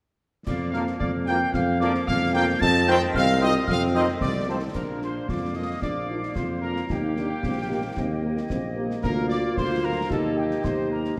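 A spirited, rousing military-style march for wind band in Bb major at 112 BPM in a straight 2/4, cut from a longer piece, with a mellow trumpet section carrying the melody over a warm, up-front tuba bass, concert snare, clash cymbals with a dark edge and concert bass drum. An airy piccolo, a clear, distant woodwind section and a very quiet French horn accompaniment fill out the texture, while a clear, vintage-tinged trombone section holds sustained chords until 4.6 s. At 4.8 s a background euphonium takes up a second line as the harmony moves through Bb and Eb, all set in a spacious scoring-stage reverb.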